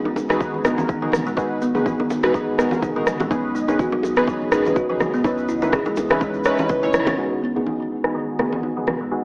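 This excerpt has the boxed-in, lo-fi character of a home cassette heard through an AM radio, set in a moderate digital room. The hypnotic, spiritual afro house groove swings on a punchy, layered electronic kick and a house kit with rim click and toms, while ringing congas, low-tuned bongos and a grainy egg shaker sit in the background. Up front, a woody, hollow kalimba plays bright arpeggios through tape echo, and detuned sawtooth keys add decaying stabs coloured by chorus and phaser, with sidechain pumping on both. Beneath them a deep sine sub bass stays in the background, and a very quiet, smooth pad sustains chords moving from G#m7 through B69 and C#m9. Around a band accent at 6.9 seconds, the kick, bongos and shaker fall away, and filter sweeps run across the drums, kalimba and keys from 7.2 seconds until the close at 9.2 seconds.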